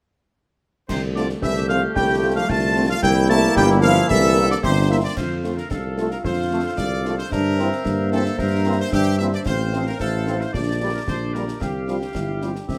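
A spirited, proud military-style march for wind band in F major at 112 BPM in 2/4 opens at 0.9 s with a bright trumpet section carrying the melody over an up-front tuba bass, a warm euphonium second line, tight sustained trombone chords and a close, dry kit of concert snare, dark clash cymbals and bass drum. A hollow, pure piccolo sits in the background until 5.1 s, a mellow French horn section adds smooth-topped accompaniment from 1.2 s, and a clear woodwind section joins at 1.4 s with its own tight second line. All of it is set in a light reverb as the harmony moves from F/C through C7 and Gm/Bb to Csus4 in this excerpt from a longer piece.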